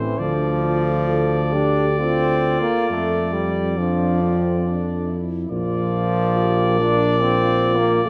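Set in a gently rubato triple metre, this short fragment from a longer classical work unfolds as a tender, hymn-like passage for brass band. A cornet carries the melody in a warm voice. Beneath it, a French horn section sits in the background with a mellow second line, while a euphonium with light vibrato and a smooth top adds mellow accompaniment. A close-miked trombone gives the middle of the texture a more present body, and an up-front tuba, also touched with light vibrato, anchors the bass. The harmony moves from Dm to Dm/F at 2.9 seconds and settles on Bb at 5.5 seconds, all within a resonant church or concert hall that wraps the ensemble in a generous, wet reverb.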